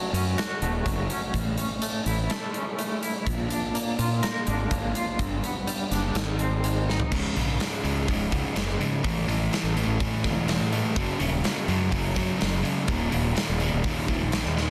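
Anthemic and cathartic, this quiet-loud alternative rock passage, cut from a longer piece, moves at 125 BPM in a straight 4/4. It opens in half time with a clean, twangy electric guitar playing compressed, fingered arpeggios colored by tremolo and analog delay, moving from Gbm through A, Bb, G and Ab. Underneath, a fingered electric bass growls with fuzz and overdrive, while a huge arena drum kit, acoustic and up front with a punchy kick, medium-tuned snare and a pumping hall sound, drives with crash, hi-hat and toms. A drum fill at 6.9 seconds sets up the loud half, where the arpeggiated guitar drops out at 7.1 seconds and a bright, crunchy, double-tracked overdriven guitar takes over with a picked riff on power chords from Db5 through A5, Gb5 and Eb5. The sound is dense and heavily limited in a modern master, with light studio reverb.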